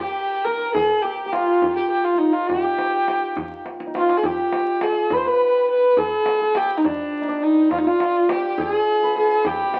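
Persian modal ensemble music in 6/8, soulful and longing, cut from a longer piece and heard through the crackle of a very old 78 rpm record with a roomy studio reverb. An earthy bowed kamancheh carries the melody up front, with light vibrato, portamento and an airy bow, while a mellow, shimmering hammered santur rings beneath it as a second line. A tight tombak struck with hard hands joins at 0.7 s, plays a drum fill from 3.6 s, and the music moves into a new section at 4.2 s.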